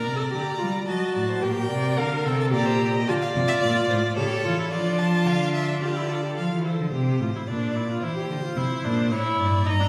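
In a straight 3/4 at 109 BPM, this baroque-style fugue for string quartet in G minor moves with a stately yet lively step, cut from a longer piece and heard from further back in a wet concert hall with a 2.0-second reverb. A focused, vibrato-laden first violin carries the melody while a smooth, even second violin traces a distant second line that drops out at 6.4 seconds and returns at 9.7. Beneath them the viola adds expressive accompaniment with portamento, and an up-front cello anchors the bass with a rich, smooth-topped tone.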